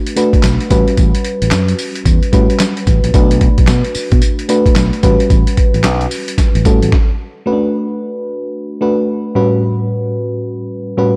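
The recording has a dark, warm production with light reverb and a digital ambience, and this short cut from a longer piece feels bouncy and punchy. It is new jack swing R&B in B minor at 111 BPM, in 4/4 with a sixteenth-note swing. The chords move between Bm7 and A13. An up-front FM electric piano carries the accompaniment with a warm, warbling, vintage tone, a noise layer and a fast attack on notes that decay. A compressed, pitched-down, sampler-style boom bap kit sits just as close, with a gritty, tape-warm character from being re-recorded in a small room: a thumpy kick, a medium-tuned snare, handclaps, hi-hat and tambourine. A fingered electric bass adds a warm, punchy, amped low end beneath them. At 6.9 seconds the groove stops, leaving the electric piano to play on alone through the repeated section and close with a short fill at 11.0 seconds.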